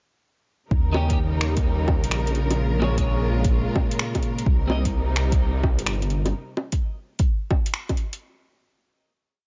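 Ghostly and rainy, this brief future garage piece at 128 BPM swings over a muffled, overdriven two-step kick and a skittering deep house kit of metallic hats, low bongos and finger snaps, while a menacing, detuned saw bass glides through long notes beneath lush bowed strings holding Eb7, Bbm7 and Cm7 chords, both pumping to the sidechain, and a bright twelve-string electric guitar scatters sparse, tape-echoed chord stabs until 4.8 seconds, all in a dry, dark mix.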